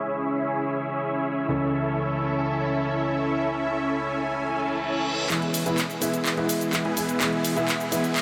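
Euphoric and triumphant, this cut from a festival progressive house track at 126 BPM in E major opens with a dark, mellow grand piano carrying tape echo beneath a lush, bright, chorused and phased unison pad and a huge, thick, detuned supersaw riff set up front under a filter sweep, with a reverse cymbal and riser rising in the background from 4.6 s before a layered big-room drum kit of handclaps, cabasa and hi-hat and a very quiet, fat, saturated analog bass arrive at 5.3 s for a build-up with a drum fill and further filter sweeps on the supersaw and pad, all soaked in a dreamy, reverb-drenched mix.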